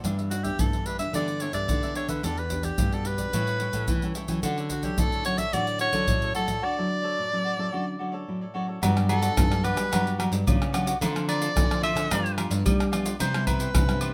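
A joyful, festive samba-choro fragment at 109 BPM opens with crisp picked cavaquinho, a small, bright fingerpicked nylon-string guitar, and a deep classical nylon-string bass guitar whose finger squeaks come through, all over up-front percussion of egg shaker, deep surdo, pandeiro, agogo bells and tamborim in a small room. A soprano saxophone enters at 0.3 seconds with a jazz-style melody full of vibrato and scooped notes, carrying the D major passage through chords like Em7, A7 and Dmaj9 to a break at 6.6 seconds. At 8.8 seconds the music moves to G major and the saxophone takes a solo over Gmaj7, Dm9 and Cmaj7, all set in a moderate studio reverb.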